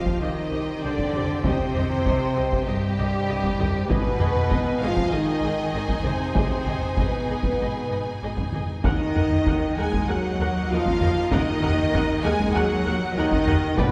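A straight 4/4 pulse is pounded out up front by a taiko ensemble on hard sticks, driving this dark, dramatic passage of epic orchestral film score as a huge, very quiet sub drop rumbles under the first 1.5 seconds. Behind the drums, a warm, smooth bowed violin melody and a focused, lush second violin line ride over sustained chords from mellow French horns, tight, vintage-toned trombones and a rich string section. A distant viola accompaniment fills the middle, while expressive cellos and smooth double basses hold the low end. The harmony moves from Cm to Abm to Ebm, and a wet scoring-stage reverb sets the orchestra further back in the room.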